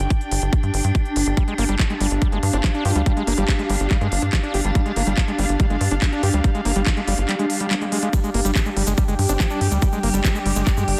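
A swarming, detuned drone with built-in reverb and sidechain pumping, a tight, punchy sequencer bass, handclaps and crisp hi-hats from a drum and bass kit, and an airy, breathy chorused pad open this intense, hypnotic psychedelic trance excerpt at 142 BPM. They are joined at once by an up-front, tape-warm electronic kick, then at 1.4 seconds by a squelchy, gritty acid bass riff with delay. A very quiet wobbling formant bass surfaces briefly, a faint electronic swell sounds at 7.5 seconds, and a grainy, distant egg shaker enters at 8.1 seconds, all in a dense, heavily limited modern master.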